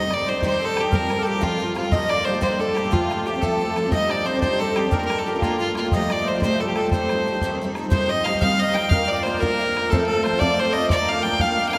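A clear, intense fiddle leads this wild, driving Celtic jig in C dorian, carrying the melody up front at 120 BPM in 6/8, with an airy bow, light vibrato and a slightly boxy edge, touched by analog delay. Beneath it a bright, full-bodied steel-string acoustic guitar picks the accompaniment with fresh strings and an ensemble chorus, moving through chords such as Cm, Fsus2, Ebmaj7 and Bb. Further back, a reedy single-reed accordion with dry tuning, also carrying analog delay, and a shimmering, ringing hammered dulcimer share the fiddle's register as second lines. An open, boomy bodhran enters at 0.1 seconds to push the jig along. The whole mix is soaked in a dreamy cathedral reverb, and this short cut from a longer piece shifts into a new section at 7.9 seconds before ending at 11.8 seconds.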